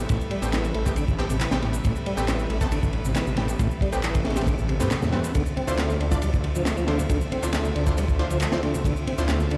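A crunchy breakbeat drum kit sits up front in this raw, swaggering breakbeat excerpt at 137 BPM in D dorian, its punchy kick, high-tuned snare and dark ride cymbal saturated and gritty with a rolled-off top. A thick, menacing detuned saw bass beats beneath it, while a full tonewheel organ riff, lightly overdriven with chorus vibrato, slow rotary speaker, tube saturation, 12-bit sampler grit and tape echo, enters at 0.1 seconds. A bold, bright orchestra-hit-like synth stab sits in the background with its built-in reverb and tape echo, and a soft, floating chamber string section holds distant sustained chords that pump against the beat. Tape-warm electronic shaker and handclaps add texture, and very quiet, damped, low-tuned congas join at 5.3 seconds as the harmony moves from Am9 to Dm9. The whole mix sounds as if played on a big sound system in a bare stone room.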